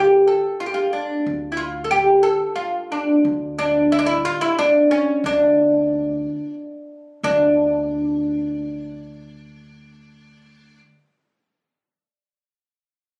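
This Arabic piece, cut from a longer work, carries a longing, soulful mood in an unhurried triple metre. The oud carries the melody up front, its bright, fretless double strings plucked with a plectrum and sounding woody, moving within a compact range from C#4 to A4. Beneath it, an upright bass plays pizzicato on steel strings, holding a low D2 with a warm tone far back in the balance. Both instruments play together from the start to 10.8 s, and the passage shifts into a new section at 7.2 s. The sound has the intimacy of a phone recording in a small room, with moderate ambience and added studio reverb around the players.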